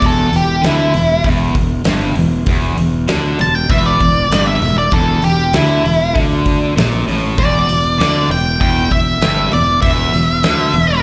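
An octave-fuzz lead guitar stands up front, its dark, picked tone pushed through distortion and trailed by tape echo as it carries the melody for the full 11 seconds. Beneath it, a double-tracked electric guitar grinds out a bright, picked, distorted riff low in its register. A growly fingered bass, overdriven and fuzzed, comes through direct and amped, sitting close to the front of the mix. A huge arena drum kit drives a straight 4/4 with a punchy kick, a fat snare and hi-hat in a big acoustic room until 10.9 seconds. This brooding, smoky blues rock power trio and southern rock excerpt stays on a single chord and sounds like a live gig heard through the venue's PA, with club reverb and little added reverb on the instruments.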